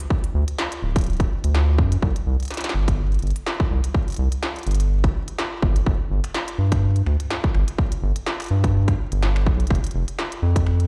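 Played back through a big sound system in a bare room, this wistful, glitchy IDM excerpt swings its 16ths at 125 BPM, pairing an up-front distorted electronic kick with an industrial kit of finger snaps, clanging snare and smooth hi-hats touched with delay, all over a deep, round analog bass that sustains mellow, wave-folded tones from D1 to G2.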